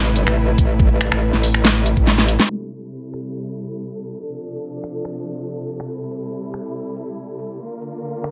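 Heavy wobble dubstep at 141 BPM in A minor with a menacing half-time feel, this excerpt opens on a drop where a metallic, saturated FM wobble bass snarls up front over a knocking layered kick, while bowed studio strings, pumping with sidechain and gliding with vibrato and portamento, sustain chords beneath a dubstep kit of finger snaps, low-pass-filtered metallic hats and a huge snare set in light digital ambience. After a drum fill and a band accent at 2.4 seconds, a filter sweep carries the strings and kit onward through Am7, Dm7 and Bb.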